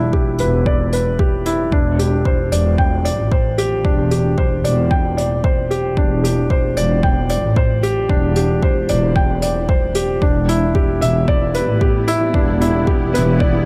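Lightly reverberant and intimate, this hypnotic piano-and-strings electronica fragment sets a soft, thin-felt upright piano riff, low-pass filtered and echoed with delay, over a dark, veiled section of bowed, muted double basses pumping to the sidechain, a deep, tape-warm electronic kick up front and a distant, roomy brushed hi-hat, moving from Em7 to Csus2/E and back until a blurred, detuned granular pad drifts in with its own reverb at 11.6 seconds.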